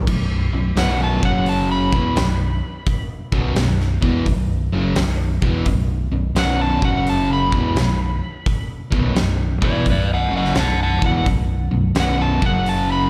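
Blues rock power trio with a southern rock swagger, this driving, swung cut from a longer piece opens with a bright, double-tracked distorted guitar riff over round, overdriven fingered bass and a huge arena drum kit with a fat snare and punchy kick, as a warm overdriven slide guitar joins at 0.8 seconds with a high melody, all heard as a live gig through the venue's PA with club reverb.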